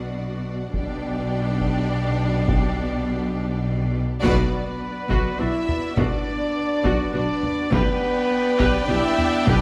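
Dramatic and relentless, this fragment of an epic orchestral film score moves at 103 BPM in 3/4 in B minor. A distant violin section carries the melody and a warm violin section adds a second line, both in the background, over lush violas, a focused string section holding sustained chords, dark French horns, a close cello section and a distant double bass section on the bass. Compressed, saturated taiko drums struck with heavy sticks enter at 0.7 seconds, and a clear solo trumpet adds stabs from 4.2 seconds, where the full band hits an accent, all within a moderate scoring-stage reverb.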